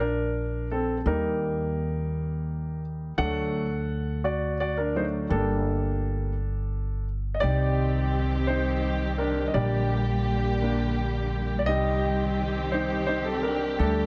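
A clear, polished baby grand piano carries this aching, melancholic pop ballad in six-eight, its chords moving from Bb through Eb and D toward G minor and C minor, with a woody pizzicato upright bass sitting up front beneath it. At 7.4 seconds a dark, lush studio string section enters with bowed, sul tasto sustained chords and vibrato. A moderate plate reverb gives the short excerpt a spacious glow.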